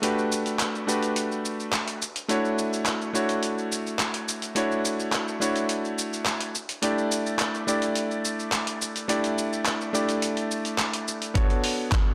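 Nu-disco at 106 BPM with a sensual, sleek mood, this short excerpt is built on a bright, clangy vintage electric grand piano that carries the accompaniment through Gmaj9, Dmaj9 and A7sus4 chords, its long sustain shaped by sidechain pumping and a digital delay. Beneath it, a gritty, compressed sampler-style soul kit of handclaps, hi-hat and shaker sits up front in a studio reverb, all bathed in a moderate plate reverb. At 11.4 s a thumpy electronic kick drum arrives as the harmony moves to Bm9, just before the cut at 12.1 s.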